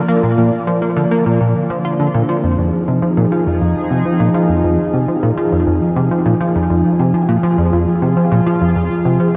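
A straight 4/4 pulse at 102 BPM carries this short cut from an expansive, mysterious piece of sequencer-driven space music in F dorian, tuned to A4 = 435 Hz, moving from Bb to Fm7 at 2.4 s. Up front, a punchy, funky analog bass riff of sawtooth and square waves with ring modulation, a filter sweep and a fast, decaying attack sits beside an evolving, full-bodied pad whose bright sawtooth, sine and sub-octave chords swell in through a slow attack and filter swell, thickened by chorus and shimmer reverb. In the background a mellow, thumb-plucked concert harp rings out arpeggios through analog delay, all within a lush hall and a dark, warm production.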